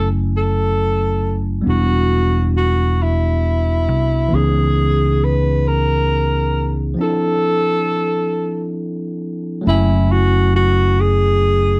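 A breathy tenor saxophone carries the melody in this slow, late-night R&B passage. Its mellow, jazz-style solo lines have light vibrato, soft attacks and scooped notes, and a slapback echo lends them a roomy, slightly distant air. Beneath it, an overdriven tine electric piano supplies barky, gritty accompaniment through a combo amp, its bright tone colored by a phaser. A fingered electric bass sits up front with a round, dark, amped sound, anchoring the sultry mood. The piece moves in a straight 6/8 at 45 BPM counted in dotted quarters, in F# minor, drifting through F#m9, Em9, C#m9 and Dm9; a break arrives at 7.0 seconds, and a new section at 9.6 seconds returns to F#m9. The dry, close 1970s-style studio sound keeps the playing intimate, and the clip is cut from a longer piece.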